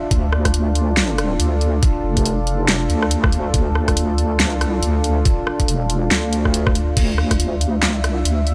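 A dark, detuned analog pad opens on a sustained D minor add-nine chord, its chorused sawtooth tone moody and full-bodied, before a deep, mellow wobble bass with tube saturation and a deep house kit enter at 0.1 seconds in this brooding, meditative deep dubstep passage at 140 BPM, felt in half-time with a swung sixteenth-note lilt. The kit sits up front with a fat snare, handclaps, hi-hat, rim clicks and crash in studio reverb, while a gritty, pitched-down electronic kick thumps beneath it until 7.4 seconds. Digital ambience surrounds the slow-attack pad and the warm, sustained bass, keeping the mood shadowy and still through to 8.5 seconds.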